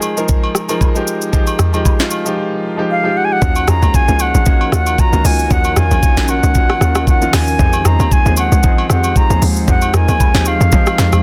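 Amapiano with a hypnotic, soulful mood, cut from a longer piece and moving with a gentle swing. A clear concert grand piano plays an open-sounding accompaniment from the start, alongside an electronic afro-pop drum kit placed up front, with a knocking kick, smooth hats, and a sharp snare given soft clipping, plus acoustic agogo bells and woodblock sitting in the background with a vintage, band-limited character. A pure, straight-toned concert flute enters at 2.9 seconds carrying the melody through a digital delay. The drop arrives at 3.4 seconds as a tight, punchy log drum bass comes in with fast-attack, decaying notes, and an ethereal, airy pad adds mellow sustained chords from 4.7 seconds, pumping against the beat with ensemble chorus and its own reverb. The sound is dry overall, with a dense, heavily limited modern master.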